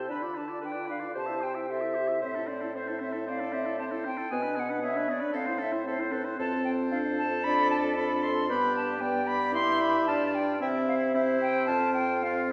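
A wet scoring-stage reverb with a 1.8-second decay places this wind quintet further back in the room, giving the sound a distant, roomy depth. It is a quick, cheerful and spirited classical-period movement in 4/4, taken with a rubato feel and cut from a longer piece. The silver concert flute carries the melody up front with a pure, metallic tone, tongued notes and expressive vibrato, while the oboe adds a warm second line with light vibrato. The French horn is dark and roomy, the clarinet sits in the background with a soft attack and smooth top, and the bassoon supplies a warm, vibrato-tinged bass. All five instruments play throughout the 12.5 seconds, with the harmony passing through diminished and minor colours before a G7 at 8.5 s leads to C at 10.6 s.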